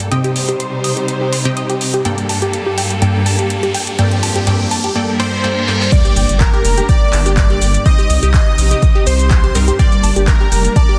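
Progressive house at 124 BPM in G minor, this dreamy, emotional passage from a longer piece opens with a build-up: a lush studio string section holds sustained, bowed chords with vibrato and a smooth top, while a bright, punchy unison pluck fires phased stabs over a second detuned sawtooth pluck tracing arpeggios through a filter sweep. A layered deep house kit with a fat snare, metallic hats, handclaps, shaker and crash sits beneath, overdriven and given small-room ambience, and a background riser and reverse cymbal carry the tension toward a drum fill at 5.7 seconds. A catchy plucky unison lead enters at 5.2 seconds, singing a short melody with vibrato. The drop lands at 5.9 seconds with an impact and an overdriven deep kick placed up front, and the lead is joined by a soft, evolving supersaw line in the background. A round, nasal analog bass enters at 6.2 seconds, dark and sustained, anchoring the Gmadd9, Cm and Gm changes. 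Sidechain pumping breathes through most parts, delay trails the plucks, lead and supersaw, and the dense, heavily limited master is lightly reverberant.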